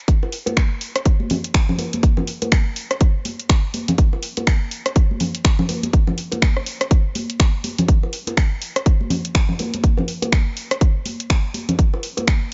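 House groove with a hypnotic, warm mood, built entirely from drums and percussion in a short cut from a longer piece, with a swung sixteenth-note feel. A punchy, layered electronic kick sits up front alongside a house kit of finger snaps, hi-hat and rim click, both re-recorded in a small room, while acoustic bongos and congas add a softer, warm layer. The sound is dry, with little reverb and a dark top end that rolls off above 7.6 kHz.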